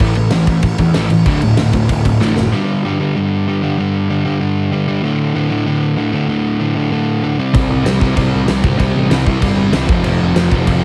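Heavily compressed with a radio-like squeeze and light reverb, this rowdy, rebellious punk rock excerpt opens with an up-front overdriven semi-hollow guitar riff, a sludgy distorted guitar in the background, a growly fuzz-picked electric bass and a big acoustic drum kit with bright cymbals, fat snare and punchy kick in a stone room; after a drum fill at 2.2 seconds, the hollow-body guitar carries its riff alone until the full band returns at 7.5 seconds.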